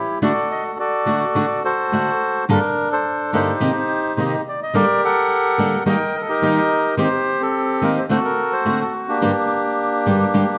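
A rubato 4/4 pulse around 107 BPM gives this short tango fragment a passionate, tense push and pull, set in G harmonic minor with tuning at A4 = 444 Hz. The bandoneon carries the melody from the opening moment to the close at 10.6 seconds, its reedy, dark and smooth tone sitting up front across a range from Bb3 to G5. A fingerpicked flamenco guitar with fresh strings joins at 0.2 seconds as accompaniment, also up front, and its warm acoustic sound spans G2 to A4. The harmony moves from D through Gmadd9, Cm7, Eb and D7 before landing on Gm, giving the passage a tense pull toward home. A moderate scoring-stage reverb with a 1.7-second decay surrounds the pair, lending the cut from a longer piece a sense of space.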